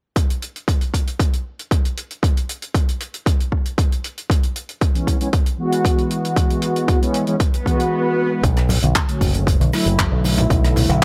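Sensual and groovy, this nu-disco excerpt moves at 116 BPM in B dorian, opening with a punchy, overdriven electronic kick up front alongside a natural, small-room funk kit of handclaps, hi-hat and rim click. At 4.9 seconds a round, detuned synth brass with chorus and slapback echo enters in front over a C#m7 chord, and an electronic swell leads into the change to Bm9 at 8.4 seconds. There a bright, direct fingered electric bass with an envelope filter arrives alongside compressed, saturated cabasa, congas and bongos set in the background, all framed by light reverb and small-room ambience.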